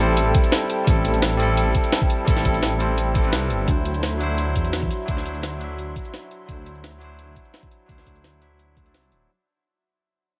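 Lush and dreamy, this brief cut from a longer liquid drum and bass track drifts between Am7 and D9 in a straight four-four, fading out across its full length. A barky, bright tine electric piano sits up front with the accompaniment, clean through a combo amp and softened by a low-pass filter, with a digital delay trailing its notes. Behind it, an airy, breathy pad holds sustained chords, its slow attack and long release given a mellow shimmer by chorus and a touch of vintage 12-bit sampler grit. A deep, rumbling detuned saw bass anchors the low end with a dark, beating tone. The jungle sampler-style kit brings a pitched-up, compressed, tape-toned hi-hat and a medium-tuned snare from 0.2 seconds, while an overdriven, knocking electronic kick punches underneath, all in a dry, close sound.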